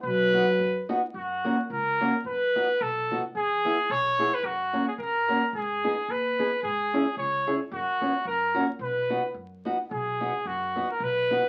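Crackle from a very old 78 rpm record hangs over this short alpine folk excerpt, with a moist studio reverb giving the band a modest room around it. At 110 BPM in 2/4 with a lightly swung eighth-note feel in B major, an alpine dance band sets a jolly, festive mood. A clear trumpet carries the melody in a classical style, sitting up front yet sounding distant and roomy, while a dark, smooth-topped euphonium adds a brief second line only from 0.1 to 0.9 s. A fingerpicked acoustic archtop guitar enters at 0.3 s with fresh-stringed accompaniment, its finger squeaks audible near the front of the mix. Underneath, a pizzicato upright bass with gut strings gives a woody, thumpy foundation as the chords move from B through G#m and C#m to a suspended F# that resolves home to B.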